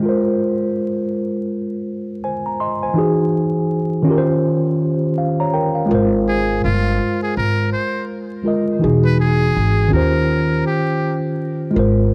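Lo-fi hip hop with a cosy, mellow swing, this excerpt opens on a worn, slightly out-of-tune tine electric piano laying down warm chords through cassette-tape haze, joined at 5.9 seconds by a woody, thumpy pizzicato upright bass and at 6.3 seconds by a buzzy, close-miked trumpet with a metal mute playing a brief jazz solo with vibrato and scooped notes, all set in a moderate plate reverb with warbling old tape, pitch drift and vinyl crackle.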